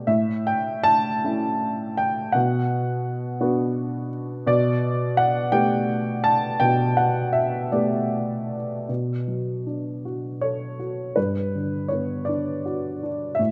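Reflective and dark, this short classical piece for solo piano unfolds in 6/8 with a free, rubato feel, cut from a longer work. A single upright piano carries everything from start to finish, its tone mellow and woody with a slight detuning that lends it a worn, intimate character, and it sits up front in the mix. Its range spans from G2 up to A5, and the harmony drifts from A through Bm to a Gadd9/B. At 8.9 seconds a second section begins, settling onto Bm7 and then Gmaj7, deepening the wistful, unresolved quality. A moderate scoring-stage reverb gives the instrument a sense of space, while the overall production stays dusky and warm.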